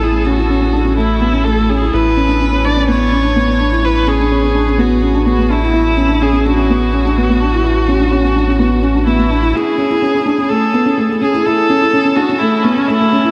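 Luminous and hopeful, this piano and strings electronica piece, cut from a longer work, sets a mellow, boxy felt-muted upright piano riff with audible action noise beneath a rich, vibrato-laden solo viola melody trailed by diffuse ambient delay, while a round analog bass holds a deep, sustained note until 9.5 s, just before a build-up begins at 9.6 s, within a dreamy mix soaked in huge reverb.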